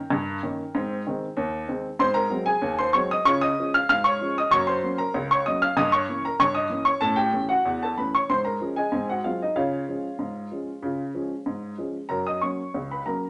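A worn, woody upright piano, slightly detuned and placed up front, carries this lively, cheerful ragtime passage on its own. It moves at 95 BPM in a straight 2/4 in Db major, spanning the keyboard from Db2 to F6. The harmony travels from Eb7/G through Ab and Ab7 to Db, then passes through Gb, Gdim7 and A7 before settling back to Db by 9.5 seconds. A new section opens at 12.1 seconds on F#, and the clip ends at 13.3 seconds, cut from a longer piece. A moderate studio reverb gives the piano a short, natural sense of room.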